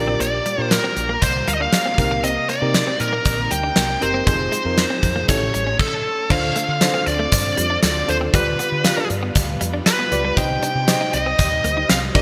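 A dark, distorted lead guitar carries the melody from the start over a mellow, warbling FM electric piano with shimmer reverb and a round, woody fretless bass, in a nostalgic, romantic 1980s-style pop excerpt at 118 BPM in Bb major. A very quiet, scooped clean guitar riff joins at 0.1 seconds, a gated drum kit with a fat snare, bright cymbals and tambourine arrives up front at 0.2 seconds alongside a faint cowbell, and a swirling, phased string machine fills in sustained chords from 0.8 seconds. The lead guitar's shimmer reverb and delay sit within a lush hall and bright digital production, as the chords move from Bb6 through Cm7 and Fm7 into a second section on Dm7, G7/D and Cm.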